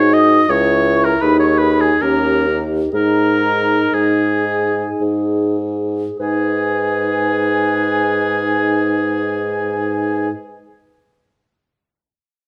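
A warm, lightly vibrato oboe sits up front in this slow, yearning and elegiac romantic movement for wind quintet, carrying a second line beneath an airy silver flute melody that stays in the background with a soft attack and expressive vibrato. The bassoon, also up front and close-miked, anchors the low end with a mellow bass. A dark, distant clarinet and a smooth-topped French horn with gentle vibrato fill in the accompaniment from further back. In 3/4 and G# minor, the rubato tempo drifts between 49 and 83 BPM, slowing through the opening 6.2 seconds over chords moving from C#m through D#7, before a new passage settles onto G#m at 6.2 seconds. A wet stone room reverb lends the quintet a roomy, resonant setting in this brief extract from a longer piece.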